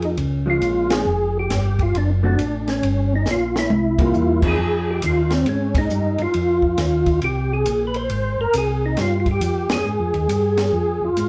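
Soul jazz organ trio in a smoky, late-night mood, swinging in 4/4 and cut from a longer piece. A mellow, round percussive tonewheel organ carries the melody up front through a slow rotary speaker with chorus vibrato. It sits over a smooth tonewheel organ bass line, also on slow rotary, and a dry compact cocktail drum kit with dark cymbals, a high-tuned snare and a punchy kick, while a clean, compressed hollow-body jazz guitar accompanies from 0.5 to 4.6 s. The band hits several accents together, a drum fill arrives at 3.3 s, and a wet studio reverb places the group further back in the room.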